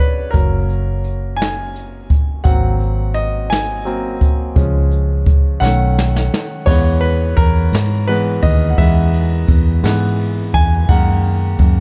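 A tender, heartfelt six-eight pop ballad, heard as an excerpt from a longer piece, in which a clear, polished concert grand piano sits up front and carries a solo throughout, its short sustain and deep low end giving each chord a present, intimate ring. A vintage muted electric bass adds a round, punchy, foam-damped foundation, while a jazz kit played with brushes joins at 0.3 seconds with dark cymbals and a boomy kick, then plays a fill from 5.6 to 6.7 seconds into the second section. The whole mix has a dusky studio ambience.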